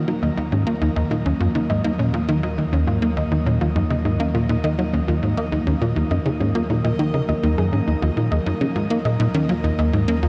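A tight, punchy sequencer bass riff, up front with vintage 12-bit sampler grit and delay, drives this expansive, mysterious stretch of ambient, sequencer-driven space music. Around it sit a sweeping resonant pad holding detuned, warbling chords in lush chorus, gentle pluck arpeggios with chorus and delay, a deep analog bass in the background, and a bubbling stepped-filter texture that enters at 0.2 s and fades in, all within a dark production bathed in shimmer reverb.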